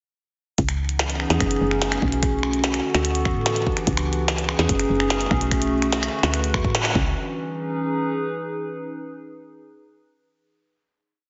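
A broken electronic kick pattern and a glitchy, ever-changing kit of clicky closed hats, finger snaps and a tiny snare, touched with delay, drive this short, melancholic IDM piece at 146 BPM in a straight 4/4 from 0.6 seconds. A woody, round FM bass with a fast attack and decaying notes plays a mellow, dub-style line beneath, while a warbling, lo-fi tape-like pad, dark and nostalgic with chorus and its own reverb, fades in slowly at 1.1 seconds with sustained chords. The harmony cycles through minor ninth chords, C#m9, F#m9, Bm9 and Em9, twice over before the band hits an accent at 6.7 seconds. The drums and bass drop away, leaving the pad to hold a final C#m9 from 7.2 seconds to the close at 8.8 seconds. The whole mix is soaked in a lush hall reverb with its top end rolled off, giving it a dreamy, intricate haze.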